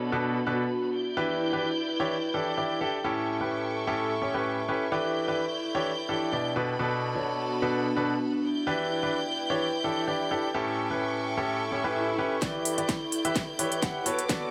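A lightly swung 128 BPM pulse in E dorian underpins this soulful, energetic piano house excerpt, where a clear, polished baby grand riff with long sustain and digital delay sits up front over distant, smooth bowed violin chords and a warbling, nostalgic lo-fi pad with chorus, all three pumping with the sidechain under moderate plate reverb. The chords cycle through Bm7, Em7 and A7 until an electronic swell at 11.7 seconds leads into a build-up at 12.4 seconds, where a punchy kick and a house kit with cracking snare and crisp hats burst in with a drum fill on Em7.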